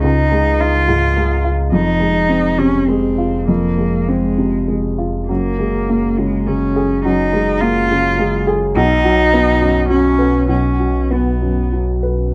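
A rubato 3/4 pulse drifts between 96 and 107 BPM in this short neoclassical piano and strings passage, tuned to A4 = 438 Hz and carrying a hopeful, intimate mood. A woody upright piano sits up front as the accompaniment, ranging from Cb2 to Cb5 and sounding natural and close. Alongside it, a single muted cello plays a veiled, con sordino second line with vibrato, its bowed tone kept near the listener until it drops out at 11.7 s. Underneath, a deep sub bass with an octave holds sustained notes between F1 and Db2, its sine and triangle timbre giving a full foundation with a fast attack. The harmony moves from Dbadd9 to Fm7, then Gbadd9 and Cb, all within a light reverb that keeps the room gentle as this excerpt from a longer piece closes at 12.3 s.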